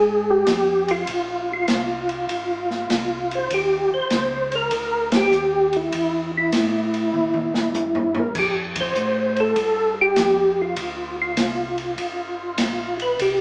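A percussive, round tonewheel organ carries the swung melody up front through a slow rotary speaker and chorus vibrato, while a mellow, dark organ bass with key click holds the low end, and an open acoustic jazz kit with dark cymbals, a medium-tuned snare and a boomy kick joins at 0.5 seconds. This soulful, smoky soul jazz organ trio plays live in one room, with a large studio reverb and a small-speaker sound, moving through chords such as Fmadd9, Ebmaj7 and a closing G7#9. The band hits an accent at 5.0 seconds, and the drums play a fill from 7.1 seconds in this short cut from a longer piece.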